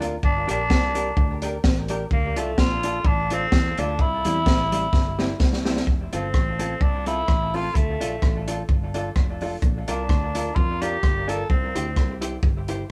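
A breathy, raspy tenor saxophone carries the melody up front from 0.2 seconds in this bouncy, joyful ska cut in F major at 128 BPM, with a light swing and chords moving from Gm through Dm, C, F and Bb. A crunchy, saturated breakbeat kit with a high-tuned snare and punchy kick drives the groove, adding a fill before the second section at 5.9 seconds, while a round, foam-muted fingered bass holds the low end. A dark, clean hollow-body jazz guitar with tape echo plays the accompaniment, and the whole band sounds like it was caught live in one room with moderate reverb.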